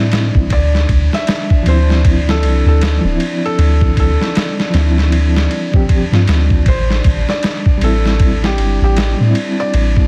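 A swung 78 BPM trip hop groove in D minor sets a dark, cinematic mood, built on a muffled, pitched-down sampler-style kit with thumpy kick and up-front round 808-style bass, while a reedy electric piano with fast tremolo and tape echo comps over a moody, detuned analog pad with subtle chorus, and a felt-muted upright piano, intimate with audible action noise and dub echo, carries the melody from 0.5 seconds through Am7 and Dm7 changes, all under vinyl crackle in a dense, heavily limited master.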